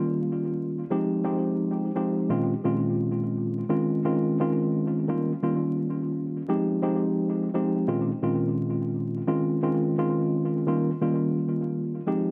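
This hip hop piece is a short cut from a longer work, moving at 86 BPM in 4/4 with a swung sixteenth-note feel and a gritty, reflective mood. A mellow tine electric piano plays alone throughout its 12.3 seconds, ranging from Bb2 to G4, its tone worn and slightly out of tune yet clean and up front. Filtering trims both the top and bottom of the piano, and tape echo trails behind it. The chords cycle through Eb9, Fm9, Bbm11 and Dbmaj9, settling back on Eb9 near the close. The mix leans heavily on echo, with a moderate echo chamber reverb and a layer of vinyl crackle.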